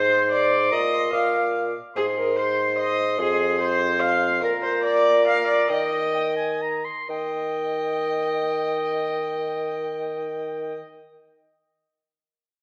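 A warm production places the players in a wet recital hall, its reverb giving the small consort a generous sense of space. This festive, courtly dance in triple metre has a straight feel and the grace of a renaissance-style piece, cut from a longer work. A clear oboe carries the melody with light vibrato and a present, classical-style tone. A single bowed viola adds a second line with a rich, reedy gut-string sound in period style. Beneath them a solo bassoon supplies a dark, punchy, roomy bass. All three play from start to finish, and the music slows between 3.8 and 7.1 seconds before a new section begins at 7.1 seconds.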